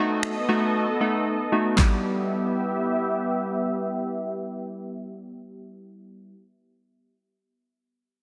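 Dance-pop with an energetic, driving feel, this piece is cut from a longer track and opens on a B7 chord before settling onto E minor as the second section begins. Analog keys with a round, detuned square-and-sawtooth tone and a fast, decaying attack carry the accompaniment, shaped by chorus, sidechain pumping and a low-pass filter sweep through the opening section. Alongside them, a lush, thick unison pad holds sustained sawtooth chords with a slow attack and long release, also treated with chorus, pumping and filtering. An electronic, layered pop drum kit plays from 0.2 s to 1.9 s, with finger snaps, handclaps, a knocking kick and a fat, soft-clipped snare sitting up front, broken by a brief silent gap at 1.3 s. A moderate hall reverb adds space around a dense, heavily limited modern master.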